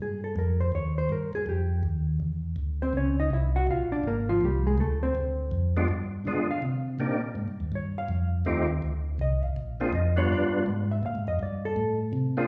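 Jazz at a swinging 163 BPM in Bb mixolydian, this bluesy excerpt opens with a dark, clean hollow-body guitar soloing over a round, mellow tonewheel organ bass line with key click and slow rotary speaker, the guitar stopping at 12.0 seconds. At 5.8 seconds a fat, lightly overdriven percussive organ enters with the melody, its third harmonic percussion and chorus vibrato turning through a slow rotary speaker. The parts sit up front, set back in a large studio reverb with small room ambience, while chords such as Ebadd9, Dm7b5, G7b9 and F9 pass underneath.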